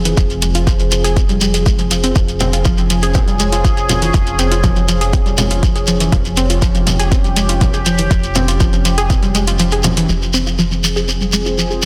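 Cinematic and melancholic, this short cut from a longer melodic techno piece moves at 121 BPM in F minor shifting to Db over F, with a tight, punchy sequencer bass and a bright, detuned sawtooth pad both pumping under sidechain, a round analog pluck playing arpeggios through chorus and dub echo, a grainy close shekere, and overdriven electronic hi-hat, congas and a deep kick that drops out at 9.6 seconds before a filter sweep on the pluck from 10.1 seconds in a dense, heavily limited master with light reverb.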